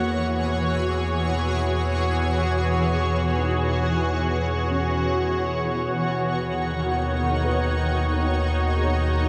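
A shimmering, detuned pad with an octave-up sparkle and chorus sits up front from the start of this weightless, peaceful ambient fragment in free time, alongside a round sine sub bass, a calm organ-like drone evolving in the background, and a mellow felt-muted upright piano whose tape-echoed arpeggios fade out over the full 9.3 seconds, all bathed in a wet spring reverb and echo-heavy mix as the harmony drifts from E69 to Badd9/D# at 5.9 seconds.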